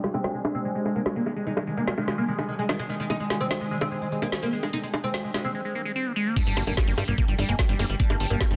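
A dense, heavily limited mix with light digital ambience carries this alien, driving psychedelic trance passage, cut from a longer piece, where a bright, fretless oud with double strings plays the melody up front through phaser, dub echo and sidechain pumping, beside a squelchy, resonant liquid acid bass riff with the same treatment. A very quiet, warbling swarming drone holds tense chords beneath a blurred granular cloud pad in the background, while a filter sweep runs across the drum and bass kit's woody snare, metallic hats, bongos and crash cymbal. At 6.4 seconds the drop lands with a very quiet impact and a knocking electronic kick, and a punchy, funky plucky analog bass joins at 6.5 seconds.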